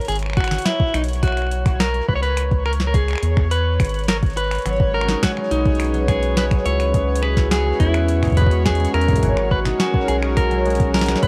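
A straight 4/4 pulse at 105 BPM anchors this glitchy, intricate IDM excerpt in G# minor. A soft, produced electronic kick enters at 0.4 seconds alongside a booming analog drum machine of finger snaps, metallic hi-hats and a crisp snare, both re-recorded in a small room. A round, deep bass built from square, sine and triangle waves sits up front with a wave-folded edge. A dark, clean electric guitar carries the picked melody through a digital delay, while a bubbling, resonant sawtooth texture steps through random filter moves in the background with chorus and its own reverb. At 4.7 seconds a smooth sawtooth pad with chorus and a grainy 12-bit sampler character joins ringing, fingerpicked concert harp arpeggios over chords that move between G#m7 and C#m7 before settling on G#m9. Light reverb and worn, warbling cassette tape with drifting pitch give the mix an aged, hazy finish.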